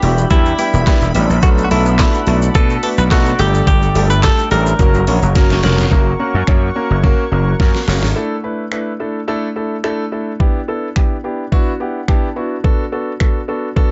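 Dance-pop in an energetic, confident mood, this short cut from a longer piece sets a twangy, clean electric guitar melody with tape echo over an intimate concert grand piano with audible action noise, a gritty overdriven slap bass, a knocking, layered pop drum kit of kick, deep snare, hi-hat, shaker, handclaps and finger snaps, a sweeping resonant pad with chorus in the background, very quiet squelchy blip-pluck arpeggios and a grainy egg shaker, with sidechain pumping on the piano, pad and bass, drum fills at 5.4 and 7.6 seconds, a piano fill at 11.5 seconds, and a dark, dry mix where only the piano and drums carry on to the end.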